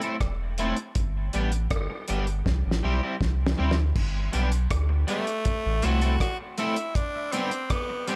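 A raspy, gritty tenor saxophone enters at 5.1 seconds with a forceful solo melody, touched by light vibrato and dub echo, in this laid-back, hazy dub reggae excerpt at 80 BPM in G major. Beneath it, a twangy, slightly broken-up electric guitar with analog chorus and dub echo plays accompaniment over a cloth-damped, thuddy drum kit with dark cymbals, a fat snare and a drum fill, while a round, deep sub bass holds the low end until 6.2 seconds. The chords move through Am, G and C, and light reverb gives the sound a small-room ambience.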